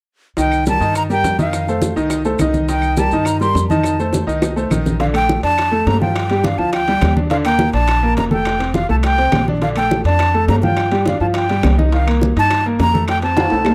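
Festive and sunny, this fast salsa piece at 208 BPM in Bb major puts a breathy, vibrato-laced concert flute melody up front beside a brilliant, long-sustaining upright piano, over a thumpy gut-string pizzicato upright bass, background congas, soft-handed bongos, woody claves and grainy maracas that drop out at 5.0 s as ringing, distant timbales enter, with drum fills closing each section in a dry, close 1970s-style small-room sound.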